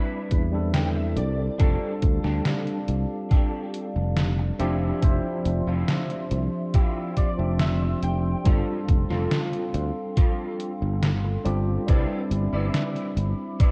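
Vaporwave at a slow 70 BPM in C major, this short excerpt drifts in a nostalgic, dreamy haze, moving from Cmaj9 through F69, Dm9/F and G9sus4 before settling back on Cmaj9. A clean tine electric piano sits up front with subtle chorus and tape echo, while a warbling, lo-fi pad of square and triangle tones hangs dark in the background, its slow attack softened by chorus and built-in reverb. An electric guitar at the edge of break-up plays a twangy, picked riff through ensemble chorus, tape echo and 12-bit sampler grit, and clean electric guitar fills surface at 0.3 and 6.7 seconds. Underneath, a sustaining fretless bass enters at 0.3 seconds with a bright, growly, direct tone that sits prominently forward. A detuned 8-bit drum machine supplies hi-hat and a medium-tuned snare with gated reverb and sampler grit, anchored by a thumpy, tape-warm electronic kick, the loudest part of the mix. The whole recording carries a cassette-tape character with light reverb.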